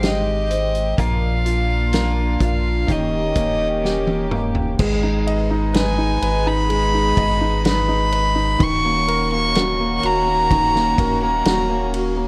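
Tender and emotional, this slow pop ballad excerpt sets a rich, floating solo violin up front over clear concert grand piano, a reedy background string section, a round sine sub bass and a punchy, natural country drum kit, while a bright, clean electric guitar plays phaser-and-delay arpeggios until 4.8 seconds, as a drum fill ends, all wrapped in small room ambience and the worn, warbling pitch drift of old cassette tape.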